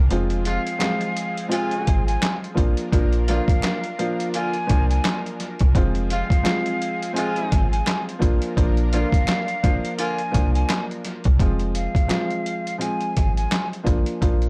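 A swung boom-bap groove opens with a brief break at 0.1 seconds: a sampler-style drum kit, pitched down, compressed and overdriven, sits up front with a thumpy kick, medium-tuned snare, hi-hat and handclaps, sounding muffled as if re-recorded in a small room. Beneath it, a metallic, digital FM bass with a fast, decaying attack holds the low end. A dark grand piano with short sustain and a cassette-tape tint plays mellow accompaniment over chords moving between Fm and Bb. A breathy jazz flute carries the melody with vibrato, a soft attack and an unsteady quality, its lifted highs trailed by tape echo, while a smooth-topped jazz horn section adds filtered stabs that also carry tape echo. In the background, a lush, thick pad of detuned sawtooth voices warbles with chorus until 11.4 seconds, and a close finger snap adds a human touch. The mood is tough yet reflective, and the production is dark, warm and nearly free of reverb, cut from a longer piece.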